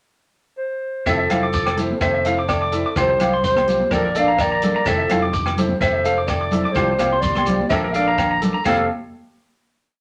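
A straight 4/4 highlife groove at 126 BPM sets a sunny, warm mood in F major across this short complete piece, which opens with a pickup bar before the band enters at 1.1 seconds and closes on a held final chord. A vintage drum kit with a tight kick, rim click, hi-hat and crash plays a highlife kit groove in a small room, joined by a low agogo bell time line in the background, a grainy shekere shaker pattern and ringing, high-tuned congas playing a loose pattern from 1.3 seconds. Underneath, a fingered electric bass plays a dotted figure in a low, direct register, while a flamenco guitar fingerpicks and strums upper chord shapes, its finger squeaks audible, through a progression that cycles from Fmaj7 to Csus4 and Bbmaj7. An electric guitar through a small old amp adds bright, twangy, slightly broken-up sixteenth-note arpeggios with a compressed, lo-fi edge. Up front, a dark clarinet carries the song-like, motif-based melody from 0.6 seconds with vibrato and scooped notes in a distant, roomy jazz style, and a trombone with a similarly scooped, vibrato-laden delivery supports it in the background with a harmony line mostly in thirds. 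A wet studio reverb wraps the band in a short, lively space.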